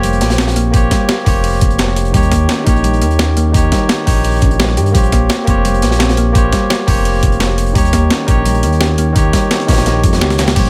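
A bright, barky tine electric piano sits up front in this digitally ambient excerpt of rolling, dreamy liquid drum and bass at 171 BPM in 4/4, its chords colored by tape echo as they move between Bbm69 and Eb7. Behind it, a round, nasal thumb-piano-like FM pluck with a noise layer spins arpeggios through chorus and tape echo, set back in the mix. A smooth, mellow synth bass blending sawtooth and triangle holds the low end with sustained notes. The drums stack a gritty, pitched-up sampler-style breakbeat kit with crash, ride, hi-hat and snare over a dark, saturated acoustic break in the background, its hats, snare and small room thinned by high-pass filters. A thumpy, compressed electronic kick enters at 0.7 seconds, drops out at 10.2 seconds, and a drum fill lands at 10.3 seconds.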